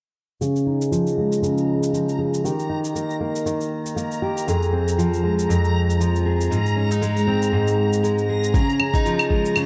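Folktronica at 118 BPM in Db lydian with a light 16th-note swing, pastoral and playful, where an up-front picked steel-string acoustic guitar plays arpeggios through a filter sweep, gritty 12-bit sampler character, low-pass filtering and tape echo over a Dbadd9, Eb, Fm, Ab progression; tape-warm cabasa and claves sit quietly beneath; a bright, detuned, reversed granular texture holding Bb5 swells in at 1.6 s with its own reverb; and a soft electronic kick arrives only at 8.5 s, the whole short excerpt from a longer piece bathed in a dreamy mix of moderate plate reverb.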